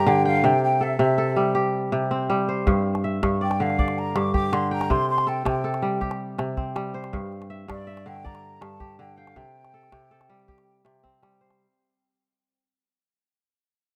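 A flowing, hypnotic piece of West African string and xylophone music opens with a crisp, ringing kora spinning fingerpicked arpeggios up front in a straight 12/8, while a distant, breathy jazz flute with a hollow, soft-attacked tone carries the melody. At 2.7 seconds a deep, close and dry calabash joins with percussion, and the whole fragment fades out across its length under light studio reverb in a rough home demo mix. The flute drops away at 11.2 seconds and the calabash at 11.6 seconds, while the kora rings on until 12.8 seconds in this passage cut from a longer performance.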